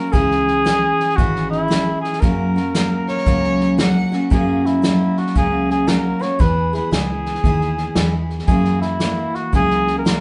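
Heartfelt and nostalgic, this swung honky-tonk and classic country excerpt sets a dark, classical-style cor anglais melody with light vibrato up front over bright, full-bodied picked steel-string acoustic guitar with audible finger squeak, a round, foam-muted fingered electric bass, and a roomy acoustic drum kit played with bundle sticks on hi-hat, tight kick and snare, while a rich, bowed fiddle adds a brief focused second line from 3.1 to 4.2 seconds, all captured as a band playing live in one room with wet studio reverb over a C#m, F#, E and F#7 progression.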